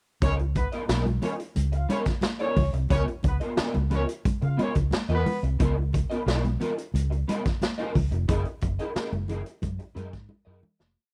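A tight sixteenth-note groove at 89 BPM drives this short, playful funk piece in Db mixolydian, built on a gritty, boomy garage drum kit up front, a dark, round, foam-muted bass riff anchored on the downbeat with ghost notes and chromatic approach notes, slightly broken-up picked rhythm guitar with muted scratches and ensemble chorus, damped congas in the background, and a mellow, distant horn section playing short octave-doubled riffs until 5.4 seconds, captured in a dry, close 1970s-style studio sound that moves from Db13 to Gb13 as it fades out from 8.3 seconds into a closing drum fill at 10.3 seconds.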